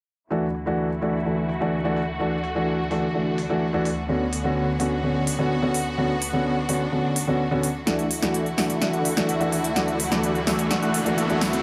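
Uplifting and triumphant, this festival progressive house excerpt moves at 127 BPM in a straight 4/4, tuned slightly sharp to A4 = 441 Hz. A dark, mellow grand piano with audible action noise sits up front from 0.3 seconds, its delayed chords moving from Dadd9 to Bmadd9/D, while a clear, biting symphonic string section holds lush bowed chords beneath it through a sweeping low-pass filter. The electronic drum kit enters at 0.5 seconds with a punchy, overdriven snare and crisp hats, both filtered and swept across the opening stretch and set in a small room ambience. At 7.9 seconds the harmony returns to Dadd9 as the build-up begins: a drum fill drives forward and a huge, euphoric supersaw lead bursts in with a detuned, compressed sawtooth riff, colored by phaser, delay and its own filter sweep. A very quiet electronic riser joins at 9.6 seconds, and a moderate digital reverb binds the whole build together.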